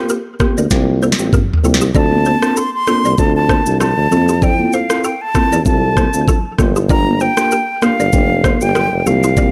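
An airy, bright silver concert flute carries the melody up front from 2.0 s, its vibrato expressive and its soft attack trailed by digital delay, over a smooth, mellow afrobeats groove at 97 BPM with a gentle sixteenth-note swing. An electronic, produced afro-pop drum kit sits forward with a knocking kick and sharp snare, playing a fill from 0.7 s, while a scooped, vibrato-laden tuba holds down the bass with a present, pop-style tone. In the background, a round, dark FM electric piano with chorus and phaser moves through chords from C7sus4 to Gm7, a woody, buzzing balafon riff echoes through digital delay, and distant, thick-skinned congas add high-tuned color from a large room, with a small room ambience framing the mix.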